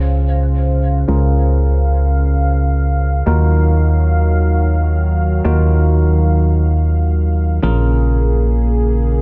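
Bathed in light reverb and a heavy echo, this upbeat, summery pop fragment of 9.2 seconds floats in free time, with a punchy, round FM bass sitting dark and up front beneath a bell-like, bright tine electric piano and a smooth, detuned sawtooth analog pad shimmering with chorus, while a filter sweep runs throughout as the chords move from Dbmaj7 to Ebmadd9 and on to Bbm7.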